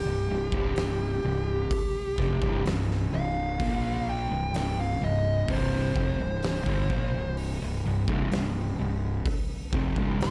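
A dark, fuzzed-out lead guitar with slapback echo solos up front across this sludgy, brooding stoner and doom metal excerpt, over a double-tracked fuzz guitar riff, a growly, overdriven fingered bass, and an oversized low-tuned kit whose boomy kick, fat snare and hi-hat pump through a big room from 0.5 seconds, all wrapped in a dark, warm production with light reverb.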